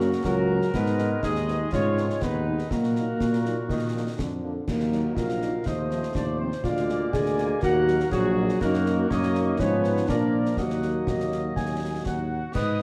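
A dark, reverberant recital-hall sound frames this stern, martial military-style march for wind band in 2/4, an excerpt from a longer piece. A distant, mellow trumpet section carries the melody over a roomy euphonium with vibrato and a smooth-topped woodwind section on second lines, while a soft-attacked French horn section and a clear, vintage trombone section sit in the background with accompaniment and sustained chords. An up-front, present tuba anchors the bass beside close, dry concert snare drum, concert bass drum and clash cymbals, and an airy piccolo with a crisp attack joins at 12.1 s.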